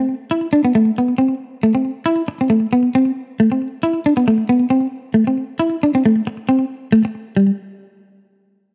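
A lone electric guitar opens this joyful highlife excerpt, fingered and up front with a dark, slightly broken-up tone and a slapback echo, moving between G3 and E4 over a lightly swung 4/4 feel. The guitar plays alone until 7.5 s, just after the music shifts into a new section at 7.4 s. The sound is dry and close, like a 1970s studio recording.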